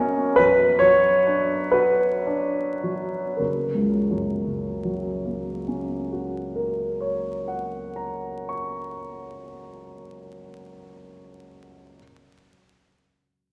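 A layer of vinyl crackle sits beneath a long, wet concert-hall reverb, and through it a polished grand piano rings out clear and up front. This is a romantic classical character piece for solo piano in F# major, hopeful and lyrical, moving in a slow, rubato 6/8 at roughly 33-52 BPM counted in dotted quarters. The piano spans from a deep F#1 in the bass to C#6 at the top, and it plays alone for the whole 12 seconds. The opening phrase slows as it unfolds, colored by a Bmadd9/F# chord at 0.4 seconds before settling onto a plain F# chord at 3.4 seconds, where a new passage begins. The lingering hall tail and surface noise give this short excerpt, cut from a longer work, an intimate, tender quality.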